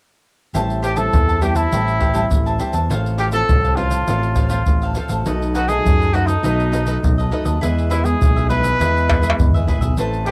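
A jazz-style trumpet leads this lively, bittersweet samba and choro passage, entering at 0.8 seconds with light vibrato and a warm tone that sits up front yet sounds distant and roomy, with a cassette-tape color. Beneath it, a round, dark overdriven fingered electric bass carries an amped, prominent low end. A crisp, picked cavaquinho and a thumb-plucked nylon-string guitar with fresh strings, classical in character and kept in the background, supply the accompaniment, both with a cassette-tape tint. Tube shaker, tight surdo, pandeiro and tamborim form a close, acoustic percussion bed, capped by a drum fill at 9.1 seconds. The harmony moves from Am7 through F/A and B7 to E, all under light reverb in a homespun cassette recording cut from a longer piece.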